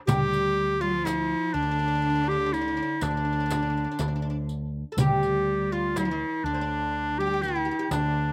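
Recorded outdoors with light reverb, this melancholic, longing cut from a longer Arabic maqam ensemble piece in 10/8 sets a bright, classical-style solo clarinet up front over a woody, plectrum-plucked oud, a rich bowed cello with smooth vibrato, a round, dark fretless electric bass holding D2, background percussion from a crisp metal-shell darbuka and a soft-handed frame drum, and a riq with bright jingles.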